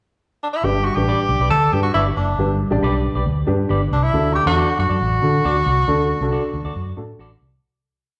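A tenor saxophone opens with a brief pickup at 0.4 s, its jazz-style call phrases sung with light vibrato and scooped notes, sounding distant and roomy in a joyful, warm soul piece. A worn, woody, slightly detuned upright piano pushes close-voiced chords while a dark, foam-muted electric bass plays a round, melodic, syncopated line, and a clean hollow-body guitar adds short chops on the backbeat as the harmony moves from G to D. The band plays live in one room, bathed in a wet large-studio reverb with a dulled top end, and the short piece fades out from 5.9 s.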